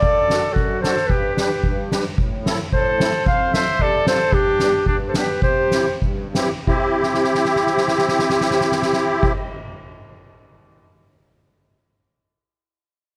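A mellow, smooth-topped clarinet carries the melody up front in this jolly, festive alpine folk dance-band fragment in C major and 2/4, joined by a clear, distant trumpet with light vibrato on a second line, both in classical style until 6.0 s. A reedy, shimmering musette accordion keeps up the accompaniment, and an acoustic soft-mallet drum kit with dark cymbals, a fat snare and a boomy kick plays a fill from 7.0 s. The tempo moves between 87 and 114 BPM, slowing near the end of the first section, all under light reverb.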